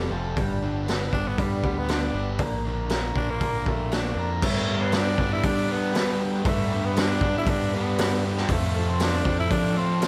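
Swaggering and confident, this classic rock excerpt struts along at 118 BPM in a straight 4/4, centered on G mixolydian with chords moving from G to Bb and back to G before touching F near the end. A raspy, growling tenor saxophone carries the melody with light vibrato and a slapback echo, while a growling, overdriven picked electric bass drives the low end. Two overdriven electric guitars play riffs, one dark and compressed in the background with its own slapback echo, the other very quiet, and a very quiet picked twelve-string acoustic guitar adds a woody, boxy, octave-doubled shimmer from old strings. A raw garage drum kit enters at 0.4 seconds with crash cymbal, hi-hat, boomy kick and a medium-tuned snare, sounding saturated and gritty with a rolled-off top. At 4.4 seconds a bright, shouting tonewheel organ slips in, barely audible, holding sustained chords through a slow rotary speaker with key click. 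A moderate, lush hall reverb gives the whole mix a big arena sound.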